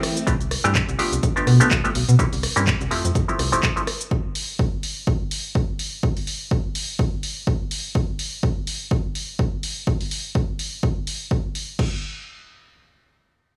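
Filtered disco house at 125 BPM in 4/4, with a 16th-note swing of 56% giving a funky, sunny lift in C major. An analog drum machine opens at 0.0 s playing cabasa, crash cymbal, handclaps, hi-hat and rim click, whose hats, percussion and cymbals pump against the sidechain, and an up-front, punchy electronic kick joins at 0.3 s, both running through to 11.9 s. A muted clav, hollow and nasal with an overdriven, phased edge and a low-pass filter, sits close and direct in the accompaniment while a slap-like FM bass adds a snappy, metallic attack that decays into a mellow tone, warmed by tube saturation and also filtered and pumping. Both clav and bass play only briefly, from 0.3 s until under 4 seconds, moving through Csus2, G9/B, C7 and Fmaj7 before the harmony drops out and the drums carry on alone. The room is small and nearly dry, and this excerpt of a longer piece reaches a new section at 11.8 s.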